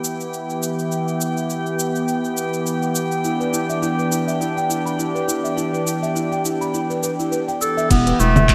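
Mystical and earthy, this organic downtempo piece moves at 103 BPM in 4/4 with a gentle 16th-note swing, resting on an E minor chord in E minor pentatonic with a slightly low tuning. From the start, a smooth, warbling vintage analog pad holds sustained chords up front with chorus and sidechain pumping, while a tape-warm organic electronic kit with smooth hats plays cabasa, congas, crash cymbal, handclaps and hi-hat, sounding re-recorded in a small room. Above them floats a glassy texture of drifting overtones, calm and bright with chorus and its own reverb, ending at 7.9 s. At 3.2 s a buzzing, woody marimba played with soft mallets enters with airy arpeggios through a digital delay. Near the close a clear, classical-style clarinet takes the melody at 7.6 s, and at 7.9 s a round, deep analog bass and a layered electronic kick join in. A lush hall reverb and bright 1980s-style digital production frame this short excerpt cut from a longer piece.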